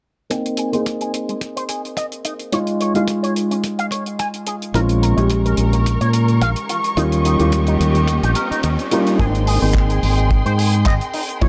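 A dark, small-room mix opens this sunny, feel-good nu-disco excerpt at 108 BPM in Ab major, where a mellow, vintage baby grand piano pumps under sidechain and dub echo, a bright, twangy envelope-filtered guitar riff glints through chorus and 12-bit grit, both filter-swept, and a dry, tight kick drives a polished funk kit of handclaps and hi-hat, before lush, bowed symphonic strings and a warm, up-front fingered electric bass arrive at 4.7 seconds and a very quiet riser sounds from 6.7 to 9.2 seconds.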